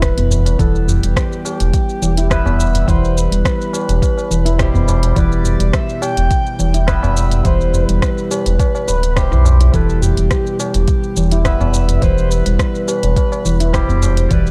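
Dry, dark and warm, this excerpt of earthy organic downtempo settles on a gentle swung groove, with a round, deep analog bass pumping up front under a soft, overdriven electronic kick and a smooth-hatted electronic kit of hi-hat, rim click and shaker. A bright, barky tine electric piano carries the accompaniment through phaser, pumping and digital delay, and from 0.2 seconds a ringing, meditative handpan adds delayed arpeggios while high-tuned tabla sits in the background. Over it all floats a breathy, flute-like synth lead with vibrato, lush chorus and tape echo, giving the whole a warm, unhurried calm.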